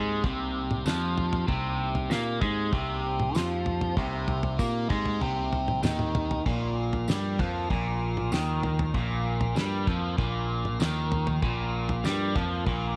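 A crunchy, double-tracked overdriven guitar riff with phaser sits up front over a growling, overdriven picked bass and a dry, damped 70s drum kit with a fat snare and tight kick, while a piping tonewheel organ with key click holds sustained chords through a slow rotary speaker in the background and a jingly tambourine joins at 0.9 seconds, giving this dark, mysterious 97 BPM psychedelic rock excerpt in C minor a light studio reverb as it moves from Cm7 to Bb5.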